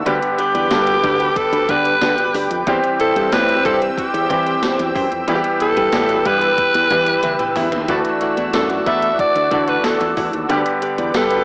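1980s-style pop at 92 BPM in G major, glossy and romantic, where a breathy, raspy alto saxophone carries the melody up front over a clear concert grand piano, a lush detuned pad with chorus and phaser, a woody fretless bass, a very quiet twangy clean electric guitar riff, tight horn stabs and a gated, overdriven digital drum machine that plays a fill at 7.2 seconds, all heard through spring reverb with the small-speaker character of a home cassette recording.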